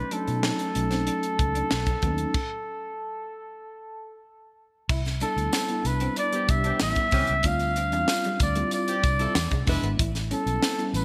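A vintage flugelhorn melody and a mellow tine electric piano open this excerpt of polished 1980s jazz-funk pop. A tight funk drum kit, a dark, foam-muted fingered bass and a very quiet, twangy electric guitar riff through a small old amp join almost at once. At 94 BPM in a straight 4/4, the mood is bittersweet and urban, with the harmony starting on B7 before a stop at 2.3 seconds. The flugelhorn sits up front with scooped notes and a digital delay, the clean piano carries an ensemble chorus, and the drums bring a high-tuned snare and gated reverb. From 4.9 seconds the chords move through Cmaj7, A7, Dm11 and E7 as a jingly tambourine enters in the background, and a distant, roomy horn section adds a second line from 6.3 seconds, all within a bright, digital 1980s-style production with light reverb and small room ambience.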